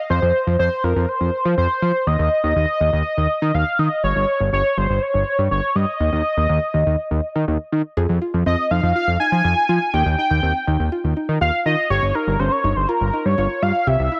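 Nocturnal and driving, this synth-pop excerpt moves at 122 BPM in F minor. A bold, retro octave-doubled lead with detuned sawtooth and ring-modulated edges carries the melody up front through chorus and phaser, while a fat analog bass with a thick, detuned sawtooth tone and a filter sweep anchors the low end. At 8.0 seconds a soft, round pluck adds mellow arpeggios through chorus and delay, all set in light reverb and digital ambience over chords moving from Fm to Cm/Eb and Gm7b5.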